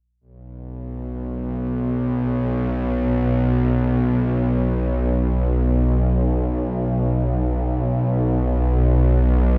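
Steeped in a dark, wet church reverb, this spacious and haunting excerpt of free-time world meditation music is carried entirely by a solo bowed-like drone on B1 that enters on a slow attack at 0.5 s and holds up front to 9.6 s, its tense, detuned sawtooth tone sustaining with vibrato, a noise layer and an evolving, string-like shimmer.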